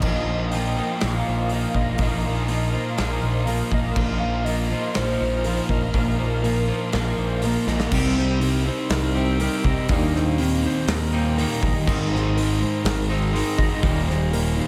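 A dreamy, blissful stretch of shoegaze-leaning rock, cut from a longer piece, opens with the full band at once. A growling, overdriven picked bass and a thick, dark fuzz guitar riff sit up front, joined by a twangy, scooped clean guitar riff washed in reverse reverb and a big acoustic rock kit with a punchy kick and medium-tuned snare. Beneath them, a mellow fingered guitar plays arpeggios through analog chorus and a diffuse ambient delay, while a brassy, airy sawtooth pad with detune, vibrato and a filter swell holds sustained chords in the background. A pure, round sine lead carries the melody softly behind the band, its chorus and ambient delay adding to the haze. At a straight 122 BPM in 4/4, the music moves from a Bbsus4 opening into a new section after a drum fill at 7.7 s, where the pad drops away and the chords step through Cm7, Ebmaj7, Ab and Eb. The lead stops at 11.4 s, leaving guitars, bass and drums to close out a reverb-soaked mix set in a small room with moderate plate reverb.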